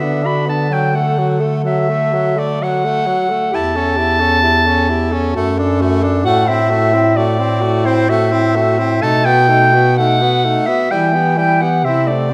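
Set in a slow, rubato 3/4 at 65 BPM, this melancholic, yearning excerpt for a classical single-reed quartet settles into E minor from 6.3 s, its harmony drifting from D through a B7 before resting on Em at 10.9 s. A warm, soft-attacked clarinet carries the melody up front, the clear alto and tenor saxophones weave a second line and accompaniment, and an up-front, mellow bass clarinet anchors the low end. The whole ensemble sits in a wet scoring-stage reverb, with the alto sounding notably close.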